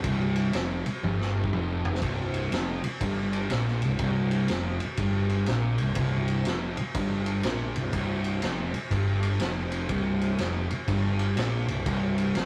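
Heavy and smoky, this excerpt from a longer piece is blues rock in the power-trio mold with a southern rock lean, moving at 122 BPM in 4/4 with a 64% swing on the eighth notes. A sludgy, dark distorted guitar carries the riff from 0.1 s, overdriven, picked and double-tracked, sitting up front and ranging from C2 to Bb2 over a C5 power chord. Beneath it, a fuzz-drenched picked electric bass holds down the low end from C1 to Bb1, round and overdriven with a blend of direct and amped tone. The vintage drum kit is acoustic and mid-forward, with a punchy kick, medium-tuned snare, toms, a ride cymbal and dark cymbals, its sound gritty and saturated with a rolled-off top, and it plays a fill from 1.0 to 2.0 s before the second section takes over at 2.0 s. The whole trio sits in a moderate stone room with a one-second tail, captured as a rough rehearsal-room recording colored by tube saturation.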